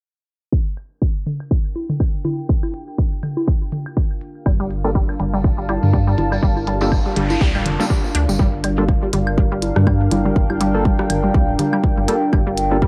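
Minimal techno at 122 BPM in G minor, this hypnotic, sparse cut from a longer piece rides a swung 4/4 groove over a single Gm7 chord. A punchy, layered kick sits up front from 0.5 seconds, joined by clicky, low-pass-filtered electronic hi-hats and a booming, tape-warm analog drum machine playing congas, rim click, toms and woodblock through tape echo, while a filter sweep moves across the drums through the first section. A deep, moody ambient pad fades in from 2.3 seconds, its detuned sawtooth layers and sub octave evolving slowly under chorus, built-in reverb, sidechain pumping and cassette-tape coloring. At 4.5 seconds a rubbery, hollow square-wave bass bounces in with sidechain pumping, alongside a juicy, squelchy resonant blip pluck treated with chorus, phaser and tape echo, and a jingly tambourine that sounds distant, as if in a large room, until 8.4 seconds. A mellow, organ-like percussive stab joins at 4.8 seconds with analog chorus and tape echo, and a noise sweep from 7.0 seconds leads into the second section at 8.4 seconds. 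The whole mix carries a light reverb and the muffled character of a home cassette recording.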